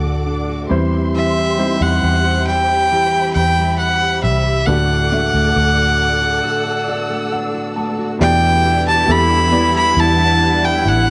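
A slow, straight 4/4 pulse at 68 BPM carries this melancholic, emotional pop excerpt in E minor, moving from D to C/E and back to D. From the start, a polished baby grand piano plays the accompaniment and a fingerpicked dreadnought acoustic guitar adds dark arpeggios. A studio string section holds sustained chords with vibrato and portamento, and a round, foam-muted electric bass sits low and prominent. At 1.2 seconds a single bowed violin takes the melody up front, biting yet earthy with light vibrato, a smooth top and a slapback echo. The piano plays a fill through a brief break at 6.4 seconds, and at 8.2 seconds the harmony settles on Em7 as a cello section enters in the background, sul tasto, soft and floating. A moderate echo chamber reverb with a 1.4-second decay surrounds everything in a studio ambience.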